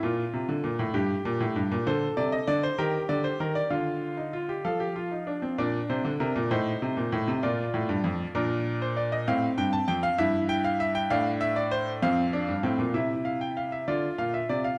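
A bright baby grand piano plays alone throughout, brilliant and up front with long sustain, carrying a serious, driving baroque-style three-part fugue in Bb major at 65 BPM in a straight 6/8, spanning F2 to A5. Cut from a longer piece, it moves into a contrasting middle passage at 5.6 s and returns to its opening material at 12.9 s, with harmonies passing through chords such as Gm, Eb, Adim and Em/G. A moderate recital hall reverb and a dark, warm production surround the piano.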